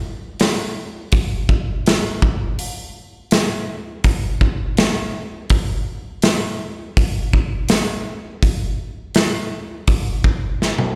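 A big acoustic rock drum kit sits up front from 0.4 s, its punchy kick, medium-tuned snare, hi-hat and toms driving a dark, cathartic straight 4/4 groove at 82 BPM through light reverb and the reverberant space of a recital hall, heard as a live gig through the venue's PA, before a drum fill at 10.6 s closes this brief cut from a longer piece.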